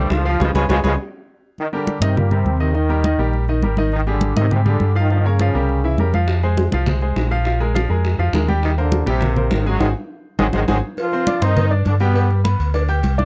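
A tight, punchy trombone section carries the melody in this fiery, driving salsa fragment at 204 BPM, playing with a light vibrato and a smooth top from the start until 6.1 seconds, then returning at 8.6 seconds. Beneath it, a brilliant, woody upright piano accompanies throughout with a present, intimate sound, its short sustain and audible action noise adding bite to chords that move through Db7, Cm9, Abmaj7 and C7b9 before settling on Cmadd9 and G. The fingered electric bass sits up front with a dark, round, amped tone, the loudest part in the mix. Congas with a thin, damped skin play close and dry under hard hands for the whole passage, while high-tuned bongos and cowbell sound distant in a large room, appearing briefly at the opening and then rejoining at 6.3 seconds. Band accents and drum fills punctuate the opening and the lead into the final stretch, all set in a dark production with light reverb.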